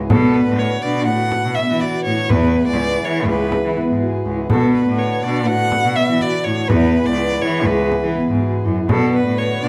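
The rhythm moves in an uneven 9/8 metre, counted in eighths at 246 BPM with a straight feel, giving this contemporary chamber piece a restless yet hopeful pulse. A pedal harmonium holds sustained chords from the first moment, its reedy, breathing tone carrying a vintage character, while a vibraphone played with soft mallets spins ringing arpeggios coloured by a fast motor vibrato. A single bowed violin carries the melody up front with a rich, smooth, even sound and vibrato. Beneath it, one bowed cello supplies the bass with a biting, intense edge and light vibrato, and a frame drum keeps time from the background until about 9.3 seconds. The harmony alternates steadily between B minor and E, returning to B minor near 8.9 seconds. Close, detailed microphones and light reverb keep the ensemble intimate in this short excerpt from a longer work.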